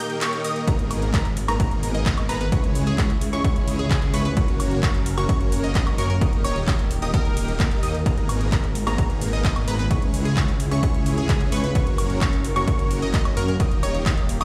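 Festival progressive house in a powerful, euphoric mood, cut from a longer piece, where a huge, thick supersaw riff with sidechain pumping and dub echo rides over a menacing, beating detuned saw bass and a punchy overdriven kick that enter at 0.7 seconds, while a lush, very quiet pad holds sustained chords, a background pluck spins arpeggios, a metallic-hatted big-room kit adds handclaps and woodblock, and a catchy, bright unison lead carries the melody from 1.9 seconds, all sounding as if played on a big sound system in a bare stone room.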